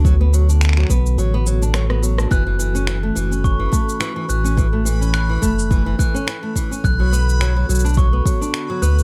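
Folktronica in F# minor at 106 BPM with a gentle 16th-note swing, this delicate, wistful excerpt sets fingerpicked flamenco guitar arpeggios, touched with delay and finger squeak, over a warbling, lo-fi pad of detuned sustained chords and a round, up-front sine sub bass with tube saturation. A deep, tape-warm electronic kick and a shaker, finger snaps and rim click, both re-recorded in a large room, carry the groove, with a break and drum fill just before the glockenspiel enters at 2.3 s, its soft plastic mallets ringing mellow, bell-like notes through tape echo. From 3.5 s a reversed, granular texture adds a bright, dreamy swell in the background as the chords move from Bm7 to F#m7 and back.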